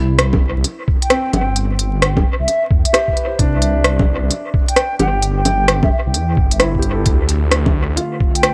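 Ghostly and wistful, this future garage excerpt moves at 131 BPM in 4/4 with a swung sixteenth-note feel, resting on Cmaj7 before shifting to Dm at 7.1 seconds. A soft, felt-muted upright piano with audible action noise and short sustain sits low in the mix, its notes carried by tape echo and sidechain pumping. Up front, a menacing detuned saw bass evolves through a filter swell with tube saturation, pumping in the same way, while an organic electronic kit of bongos, smooth hi-hats and rim clicks trails dub echo over a muffled, thumpy, pitched-down kick. From 1.0 seconds a close-miked, hollow wooden flute carries the airy, tongued melody with vibrato and analog delay. At 7.9 seconds a warbling, nostalgic tape-like pad with chorus drifts in quietly behind everything, and the echo-heavy mix is dusted with vinyl crackle and light reverb.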